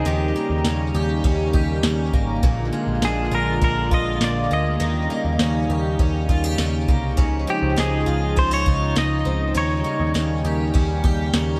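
Dream pop with an ethereal, floating mood, this short passage from a longer piece drifts along in a straight, easy 4/4. A soft vintage rhythm box sets the pulse with a deep kick, crisp snare, ride cymbal and tambourine, its analog tone sounding re-recorded in a small room, while a dark, round, foam-muted electric bass holds the low end. A picked twelve-string acoustic guitar spins shimmering, octave-doubled arpeggios with fresh strings and a boxy body, bathed in lush chorus and tape echo. Alongside it, a warm analog pad of detuned sawtooth and triangle tones sustains smooth, warbling chords with a slow attack, long release and subtle chorus. On top, a clean, twangy, compressed electric guitar carries the melody through tape echo until it drops out at 10.1 s. The whole mix is echo-heavy and wrapped in a moderate spring reverb, moving through Eb7, Bb7 and Dbmaj9 harmonies.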